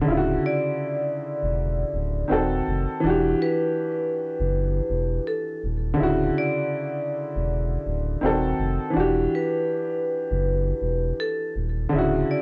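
Dreamy and cosy, this lo-fi hip hop fragment sways at 81 BPM in 4/4 with a swung 16th-note feel, cycling through Dmaj9, D#dim7 and Em9. A woody, slightly detuned upright piano sits up front with cassette tape colour and a low-pass filter, while a deep, full sub bass with octave holds sustained sine-and-triangle tones beneath it. From 0.5 s a dark, ringing vibraphone struck with hard mallets carries the melody through a low-pass filter and analog delay, its slow motor vibrato floating over a small room and the warbling pitch drift of worn old tape.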